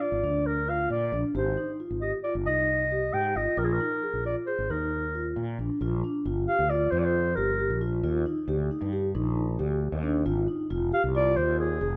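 Contemporary instrumental chamber music in 5/4 at 135 BPM, this short excerpt from a longer piece feels restless yet hopeful, centered in Bb mixolydian with a straight feel. A clarinet carries the melody between Ab4 and G5, its soft attack and classical tone sounding roomy and slightly distant even as it sits up front as the solo voice. Beneath it, a vibraphone played with soft mallets spins arpeggios from D4 to Ab4, mellow and airy with a ringing, metallic shimmer and fast motor vibrato. A fretless electric bass anchors the low end from F1 to Bb2, its growly, direct, amped tone bright and forward. The harmony moves from Bb through Abmaj7 and Bb7sus4, then opens into a second section at 5.8 seconds that passes through Ebmaj7 to Ab6, all set in light reverb.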